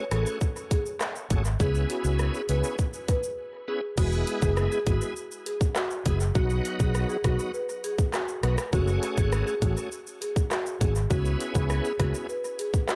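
A marimba struck with medium mallets opens this sunny dancehall excerpt together with a bright tonewheel organ, the marimba carrying a woody, smooth melody through tape echo while the organ's full, shouting chords shimmer with chorus vibrato and a slow rotary speaker. At 0.1 seconds a round, amped fingered electric bass and an electronic island pop drum kit join, the bass sitting dark and up front while the kit offers a tight kick, warm hi-hats, handclaps, rim clicks, shaker and crash cymbal in a large-room sound. The tempo is 101 BPM in a straight 4/4, in E major, with the harmony moving from F#madd9 to C#m7 before a brief break at 3.4 seconds. A new passage begins at 4.0 seconds, stepping through E and B before returning to F#madd9 and C#m7. The whole mix floats in echo-heavy digital ambience, giving the summery groove a spacious, drifting feel until it is cut off at 13.0 seconds.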